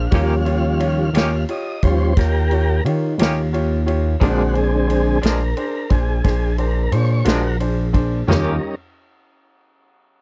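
A tonewheel organ takes the lead through a slow rotary speaker, its smooth, vibrato-laced solo running from the start to 8.3 seconds over sustained chords in this gritty, rollicking slow blues cut from a longer piece. Beneath it, a gliding synth bass sits up front with a mellow, detuned sawtooth-and-square tone and portamento that slides between notes. A soul drum kit, tight and roomy at once, adds kick, snare, toms and dark-sounding ride cymbal with a rolled-off top. A bright, woody upright piano and a twangy, picked clean electric guitar with tremolo fill out the accompaniment in a straight 12/8 feel. The harmony moves from Eb7 to Bb7 and back, and the recording stays dry, with little reverb.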